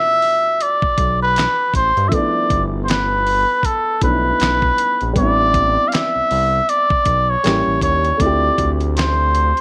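A cup-muted trumpet opens at 0.0 s alongside a dark, boxy baby grand piano, setting a sultry, smooth neo-soul mood at a relaxed 79 BPM in 4/4 with a swung sixteenth-note feel. The trumpet carries the melody up front, its veiled, soft jazz tone shaded with vibrato and a slapback echo, while the mellow piano supplies accompaniment with short-sustained voicings lower in the mix. A dusty, sampler-style drum kit enters at 0.2 s with a thumpy kick, fat snare, hi-hat and handclaps, all compressed and gritty. A saturated synth bass joins at 0.8 s, blending sawtooth and square-wave tones into a sustained, evolving low end with a fast attack and its own vibrato. The harmony rests on G9 for most of this short fragment before moving through Am7 and A7b9 to Dm9, all set in light reverb and small-room ambience.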